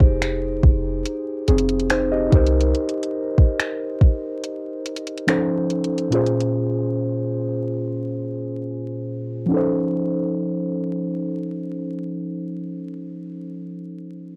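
Muted, felt-like synth keys with a warbling chorus and a dark filter sweep open this late-night, sensual contemporary R&B fragment in F minor at 71 BPM, over chords that drift from Fm9 through Cm7 and F7b13 to Bbm7. Alongside them come a boomy, sine-deep 808-style bass that drops out at 2.7 seconds and a soft, tape-warm electronic kit of finger snaps, hi-hat and kick that stops at 6.5 seconds. That leaves the intimate vintage keys alone over Bbm7 and a return to F7b13, all wrapped in the dry, vinyl-crackled sound of a home cassette recording.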